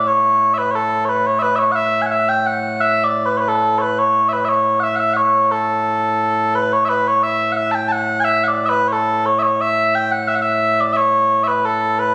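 A straight 2/4 rhythm drives this short cut from a longer piece of traditional Scottish pipe music, proud and stirring in mood. Small bagpipes play solo and up front from start to finish, their sustained tone mellow and sweet, with the opening strain heard again at 6.9 s. The sound is a phone recording in the room, carrying a moderate recital-hall reverb.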